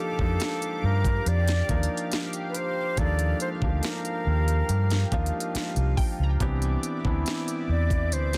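Romantic and dreamy, this contemporary R&B excerpt moves at an unhurried pace in a straight 4/4 feel. A reedy concert flute carries the melody with an airy, straight tone and tongued notes. A felt-muted upright piano accompanies it in a mellow, intimate voice, its action noise audible. Alongside them, a chorused pulse-width pad holds shimmering, detuned chords with a slow attack, moving from Ebmaj9 to Cmaj9 at 6.4 s. From 0.2 s a dark, round, foam-muted electric bass and a trap drum kit with a knocking kick, sharp snare and crisp hats sit up front, while a glassy wavetable pluck with chorus and digital delay adds crystalline sparkle in the background from 0.4 s until 7.0 s. The mix is dry, dense and heavily limited.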